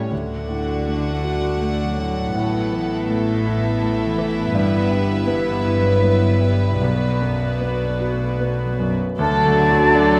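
Cinematic, emotional film score for orchestra, a tender and moving excerpt in a rubato triple metre. A clear concert grand piano with audible action noise accompanies while a very quiet, ringing harp plays arpeggios beneath bowed sul tasto strings: a rich, intimate chamber violin section on a second line, floating violas, background cellos and a dark double bass section, set in a wet scoring-stage reverb. At 9.2 s a soft-attack studio violin section takes up the melody, joined by an up-front, pure concert flute with vibrato on a second line.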